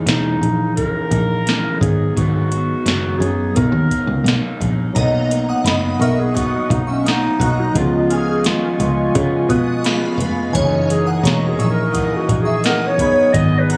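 Sunny and dreamy, this short indie and bedroom pop excerpt moves at an easy, straight pace, cut from a longer piece and heard as if captured on a phone in a room with club reverb and compression. From the opening, a slightly broken-up electric guitar through a small old amp, bathed in lush chorus and warbly pitch drift, sits beside a clean tine electric piano in the background, while a dark, round, foam-muted picked bass sits up front under a soft vintage rhythm box whose deep kick, crisp snare and metallic hats are overdriven. A mellow clarinet in classical style carries the melody through lush chorus and tape echo, moving into a solo at 5.0 seconds. At that point a bright, shimmering FM bell with a halo adds a second line through ensemble chorus, phaser and tape echo, and a nostalgic, lo-fi tape-like pad of detuned sawtooth and triangle tones settles into sustained chords. The harmony drifts through rich chords such as F#13, Bmaj7 and C#7, giving the whole a hazy, daydreaming glow.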